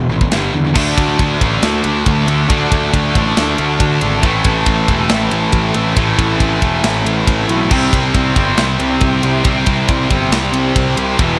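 In a straight 4/4 at 138 BPM that drops into half time at 0.7 seconds, this aggressive, epic heavy metal excerpt sets two bright, high-gain distorted guitar riffs in the background and a third, double-tracked and very quiet one entering at 0.7 seconds, over an up-front, growly fuzz electric bass, a tight acoustic drum kit with a medium-tuned snare, crash, ride and a rolled-off top, and a very quiet studio string section sustaining smooth, bowed chords with vibrato from 0.8 seconds, moving from a G5 power chord through D, Am and C in light reverb.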